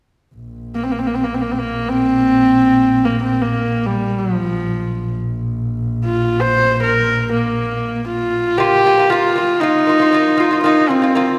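A lush, reverberant hall sound surrounds this short, vast and proud excerpt of Mongolian traditional music in free time, set in the Bb zhi mode. A bowed double bass holds a biting, intense drone on a low Bb with vibrato, while an up-front horsehead fiddle carries the husky, earthy melody between F3 and C5 with light vibrato and portamento. At 8.6 seconds the bass stops and a delicate, fingerpicked gut-string lute with double courses takes up arpeggios alongside the fiddle over a Bb chord until the cut at 11.4 seconds.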